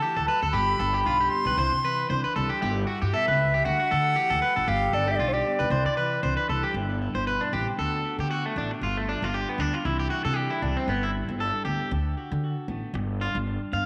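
An airy, crisp wooden flute sings a joyful, sunny highlife melody in G major at 116 BPM with a light sixteenth-note swing, over a twangy, slightly broken-up electric guitar playing up-front arpeggios through tape echo, a dark, clean electric guitar comping, and a thumpy, woody pizzicato upright bass on gut strings; the flute drops out at 6.5 seconds, and from 6.7 seconds the clean guitar takes a solo, all set in a wet spring reverb.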